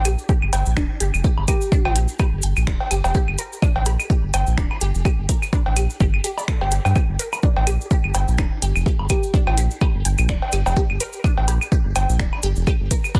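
This short cut from a longer minimal techno track opens on a round, deep analog bass that sits up front in G minor, pumping against the beat at 126 BPM with a light swing on the sixteenths. Almost at once a squelchy, resonant blip pluck riff joins, its detuned pulse and sawtooth tones treated with phaser, lush chorus, dub echo and the same sidechain pumping. The percussion is layered and clicky: a minimal kit of finger snaps and hi-hats with a softly clipped snare, a grainy acoustic cabasa, and a produced blend of claves, cowbell and woodblock, with a punchy, tape-tinged electronic kick landing up front from 0.3 seconds. A gentle, keys-like FM lead strikes a single G4 twice, at 1.5 and 9.1 seconds, coloured by chorus, tremolo, cassette tape character and dub echo. The mood stays clinical and cool over a single G minor chord, with a digital ambience and a dense, heavily limited modern master.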